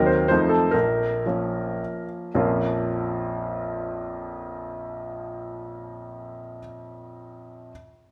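A clear, intimate baby grand piano plays alone from the start, slowing through its opening 2.3 seconds as an F7 resolves to B-flat minor, in a nostalgic, wistful romantic classical dance in 3/4 with dotted rhythms and free rubato between 103 and 142 BPM, its up-front tone carrying audible action noise and long sustain into a wet recital-hall reverb across this brief excerpt cut from a longer piece.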